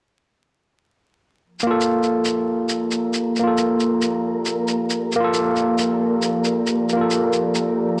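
Swung sixteenths at 136 BPM in 4/4 drive this short, melancholic, rainy future garage excerpt in G minor, resting on a single Gm7 chord. A breathy, detuned pad with chorus fades in at 1.4 s and holds mellow chords in the background; at 1.6 s an overdriven tine electric piano with tape echo steps up front through a combo amp, alongside a muffled, compressed shaker. A dark, wind-like tuned noise texture drifts in at 2.8 s, and the whole recording sits in light digital ambience with a dry, gritty hardware character and vinyl crackle.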